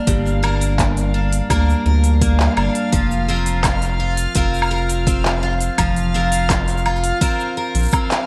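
Lightly reverberant, this short folktronica excerpt has a wistful, autumnal mood at 84 BPM in a straight 4/4. Up front, a bright, shimmering picked twelve-string acoustic guitar plays octave-doubled arpeggios through digital delay and plate reverb, moving from Gm7 to Fsus4 at 2.9 seconds. Beneath it sits a round analog bass, deep and dark with a sustained tone, while a reversed, granular swelling texture hovers high above in a dreamy haze of long-tailed reverb. The drums pair a deep, overdriven electronic kick with an organic-sounding electronic kit of handclaps, smooth hi-hat, shaker and woodblock, both given grit by overdrive and the air of a large room. The whole band lands on a shared accent at 8.1 seconds.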